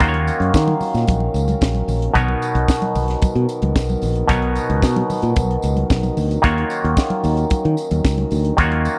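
From the first beat of this glamorous, joyful disco excerpt at 112 BPM, a tight funk drum kit with a high-tuned snare and a direct, growly fingered electric bass sit up front beside a stringy, mellow clav through auto-wah, while a distant, roomy French horn section holds sustained chords over D#m7 and Bmaj7, and damped congas and a jingly tambourine fill the background of a dry, close 1970s-style studio sound.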